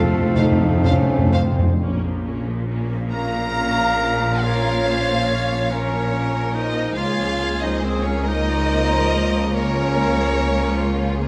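Bathed in the wet reverb of a scoring stage, this elegiac, melancholic slow romantic orchestral piece in 12/8 with a rubato feel opens with an up-front, articulate hard-mallet timpani fill, a brief bassoon, a barely audible trombone section and a distant, very quiet trumpet. From 0.4 s a rich, expressive chamber violin section carries the bowed vibrato melody, shadowed by a focused studio violin section, a hollow, airy flute group and a smooth-topped clarinet. Beneath them sit soft-attack French horn chords, a lush, very quiet viola section, a clear cello section and an intense double bass section as the harmony settles at 1.8 s.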